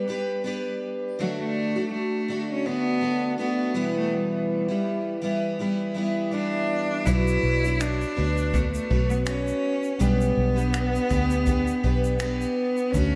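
A rich, bowed cello with vibrato and analog delay sings the melody over a shimmering, octave-doubled picked twelve-string acoustic guitar in this easy-going, carefree acoustic pop piece at 82 BPM with a light sixteenth-note swing, moving through G, D, Em, Bmadd9 and G/B, until a dark, round, foam-muted fingered electric bass and a distant vintage brush kit with a punchy kick, finger snaps and shaker join at 7.1 seconds, all bathed in a dreamy plate reverb.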